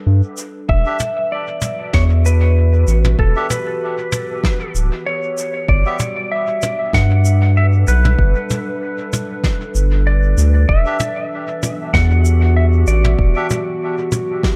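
A warbling, detuned pad opens this hazy ambient dub excerpt, holding dark, nostalgic chords with a chorus shimmer and its own built-in reverb. Almost at once a round analog bass arrives, sitting deep and up front as the loudest part, soon joined by a jazz brush kit of shaker, high-tuned snare and toms, whose strokes trail off in dub echo, and then a tape-softened electronic kick. From 0.7 seconds a clean lap steel guitar carries the melody, played with fingerpicks and slide in compressed volume swells that also ring out through dub echo. A faint, reedy melodica drops in breathy stabs, first until 6.0 seconds and again from 10.9 seconds, its phrases repeating in echo. The harmony drifts slowly between G and Em7 over a lightly swung groove, all set in a small, lightly reverberant room that keeps the mood deep and hazy.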